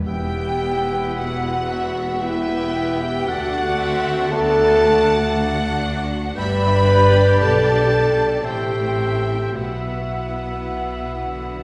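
Set in a slow, rubato 3/4 at 57 BPM with uneven beats, this solemn, yearning romantic movement for symphony orchestra in E minor is cut from a longer piece and moves from Em through D and G to Am7 before settling on Bsus4. A distant, rich violin section carries the vibrato melody, joined at 1.2 s by a second violin line, while an airy, hollow flute, a clear oboe and a bright clarinet add second lines over focused violas, a vintage-toned bassoon and a mellow, tight French horn section that stands forward with sustained chords. Rich cellos and smooth, even double basses anchor the bass, close, dry timpani sound at the opening and again from 9.6 s, and a scoring-stage reverb places the orchestra further back in the room.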